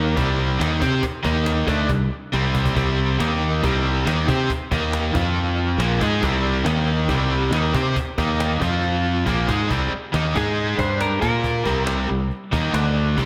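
Driving, heavy hard rock at 138 BPM in C minor, where a cranked stack guitar with overdrive and slapback echo sits up front beside an overdriven semi-hollow guitar with tremolo and slapback echo, both bright and picked on the riff, over a growly, direct fingered electric bass, a woody cajon in the background with a fill at 2.3 seconds and kick and snare dropping out at 9.3 seconds, and a lightly driven, compressed lead guitar with slapback echo stepping in for a brief melody at 10.4 seconds, all bathed in a lush hall reverb that gives an arena-sized sound.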